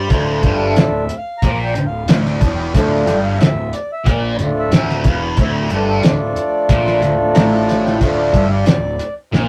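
Psychedelic rock in D minor at 91 BPM in a straight 4/4, this short cut from a longer piece feels trippy and hypnotic as it sits on a D minor chord throughout. A reedy, breathing hand-pumped harmonium takes the solo up front, holding sustained chords from F3 to Bb5 until 9.1 seconds. Beneath it, a thick, bright fuzz guitar, double-tracked and picked, churns a low riff between D2 and Bb2 through distortion and phaser. A fuzzed, overdriven picked electric bass anchors the low end down to D1, while a cloth-damped, thuddy acoustic drum kit with a fat snare, tight kick, hi-hat and rolled-off top plays up front, ending on a drum fill at 9.3 seconds. The sound is a rough rehearsal-room recording with saturation and a short, wet booth ambience.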